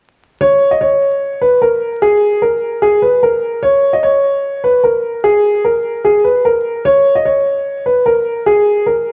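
Dark and melancholic, this half-time hip hop excerpt, cut from a longer piece, centres on a lone grand piano carrying the melody from 0.4 to 9.1 seconds. The piano sits up front with a mellow, worn, boxy tone and long sustain, softened further by a low-pass filter. A wet recital hall reverb blends with small room ambience and a bed of vinyl crackle.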